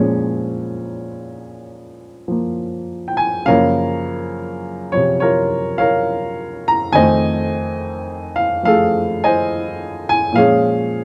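A warm baby grand piano plays alone through this moody, smoky excerpt of solo jazz in Bb minor, swinging loosely at 69 BPM with a rubato feel, its natural, short-sustained tone sitting up front in a dry, close 1970s-style studio sound as it moves from Bbm7 through Gbmaj7 and F7#9 before returning to Bbm7 at 10.4 seconds.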